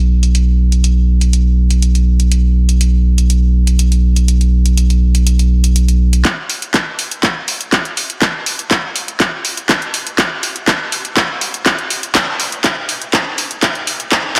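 A lightly reverberant mix opens this excerpt of progressive house, bittersweet and expansive in mood with a straight 4/4 metre. A round, deep analog bass with a dark, sine-like tone and fast attack sits up front for the first 6.2 seconds, pumping under sidechain compression. From 0.2 seconds a tape-tinged house drum kit of handclaps and hi-hats carries through to the end, its hats pumping and low-pass filtered, with the snare and room sound filtered as well. At 6.2 seconds the bass drops out and a punchy, layered electronic kick takes over, its tone and room sound high-pass filtered. That second half becomes a build-up with a drum fill, running on until the cut ends.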